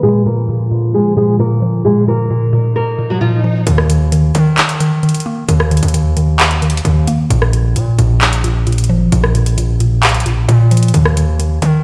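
Heard as if through a big sound system in a bare stone room, this eerie, brooding half-time trap excerpt at 132 BPM opens with a filter sweep over a bright, fingerpicked nylon-string guitar melody, a woody, round mallet-like synth pluck with chorus and phaser, and a hollow, flute-like pad in the background. An electronic swell enters near 2.6 seconds, and from 3.7 seconds a saturated, aggressive distorted 808-style bass and an up-front trap kit of metallic hi-hats, handclaps and rim clicks take over alongside the pluck.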